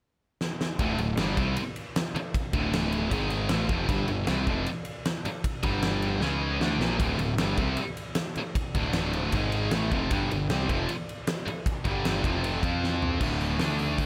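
Hard rock with an anthemic, energetic drive, this excerpt opens on a huge arena drum kit with a fat snare, punchy kick and bright cymbals, whose fill at 0.4 s brings in a bright, high-gain guitar up front, a dark, overdriven guitar in the background and a fuzzy picked bass, all riffing through power chords and major-seventh colors, with further drum fills at 6.2 s and 12.8 s, in a small room ambience.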